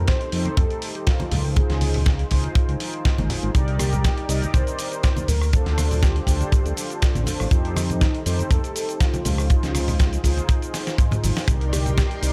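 A studio ambience frames this excerpt of groovy, sensual nu-disco, which moves with a light 16th-note swing. Up front sits a tight, mid-forward acoustic kick, joined by a gritty, compressed sampler-style kit of cabasa, hi-hat, rim click, medium-tuned snare and toms, with bright congas and bongos played with soft hands in the background. A fat, saturated analog bass with a detuned sawtooth edge anchors the low end, while a mellow, brassy synth with a round tone, chorus, vibrato, a filter sweep and sidechain pumping carries the accompaniment over chords that move from F7 through Dbmaj7, Cm7 and Dm7. On top, a thick, bold unison lead with detuned sawtooth and sub-octave layers, vibrato and dub echo carries the melody. A drum fill arrives at 10.7 seconds, and at 11.5 seconds a lush, vintage string machine enters in the background with slow-attack sustained chords, ensemble chorus and sidechain pumping.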